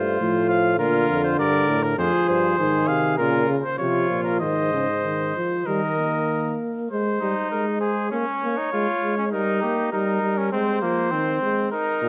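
Driving yet contemplative, this excerpt from a classical imitative canzona for brass ensemble moves at 99 BPM in Ab major, with a clear lead trumpet carrying the melody over a warm second trumpet, a dark, vibrato-tinged euphonium accompaniment and a soft-attacked, vintage-toned bass trombone that anchors the bass until 6.6 seconds and returns only at 12.0 seconds, all heard through close, detailed microphones in a moderate recital hall reverb.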